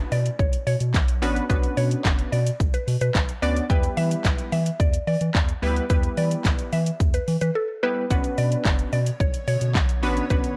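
A straight 4/4 groove at 109 BPM drives this short, bittersweet dance-pop cut in B minor, led by an up-front pop drum kit with a punchy kick, fat snare, metallic hi-hat, handclaps and shaker. Underneath, a round analog bass sits deep and dark, pumping with sidechain like the synths above it. A funky polysynth comp of detuned sawtooth and wave-folded tones fills the middle with chorus, while a woody, mallet-like FM pluck carries the melody through chorus and slapback echo. The harmony moves from Bmadd9 to Em and back, with a brief break at 7.6 seconds, and a cloudy granular pad drifts in far back at 9.1 seconds, bathed in its own reverb. Light digital ambience and a worn cassette-tape character with warbly pitch drift colour the whole mix.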